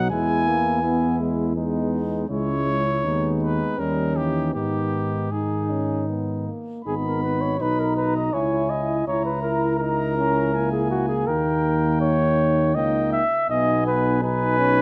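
From the first moment, a brass quintet sounds together in a grave, heroic classical passage in G# minor at 81 BPM in 3/4: a soft-attacked trumpet carries the melody while a mellow flugelhorn sits up front with a smooth-topped second line. A warm French horn and close-miked trombone, both with light vibrato, fill in the accompaniment from the background, and a distant, roomy tuba anchors the bass up front. Heard in moderate recital hall reverb, this fragment of a longer piece moves through E, C#m and D#7 harmonies, shifting to a new section at 6.9 seconds and settling on G#m/B near its close.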